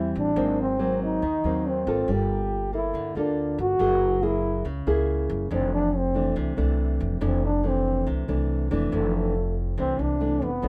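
A sunny, romantic bossa nova at 140 BPM in F major, this excerpt features a mellow trombone carrying the jazz-style melody as a solo through 8.9 seconds, its light vibrato and scooped notes sounding distant and roomy. Underneath, a thumb-plucked nylon-string guitar in a classical vein and a woody, pizzicato upright bass fill out the harmony, moving through chords like Ab9, Gm9 and Gb9 before settling on F6. Light reverb gives the whole a soft glow, with the piece continuing into a new section at 8.9 seconds as it is cut from a longer work.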